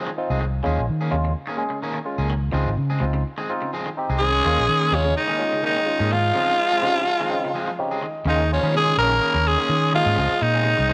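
Afrobeat at 126 BPM with a slight sixteenth-note swing, this funky, hypnotic clip from a longer piece circles between Dbmaj7 and Eb7sus4 chords. From the opening, a clean, twangy guitar plays low arpeggios in the background while a second guitar, picked and just at the edge of break-up, cuts in with stabs. A bright, barky tine electric piano, lightly overdriven and colored by a phaser, supplies accompaniment and takes a short fill from 6.8 to 8.3 seconds. Underneath, a round, amped fingered bass sits up front. At 4.2 seconds the horns arrive: a gritty, punchy tenor saxophone with vibrato and a slapback echo carries the melody up front, backed by a whispered, breathy alto and a very quiet, distant baritone playing second lines. Light reverb and a small-room ambience surround the ensemble.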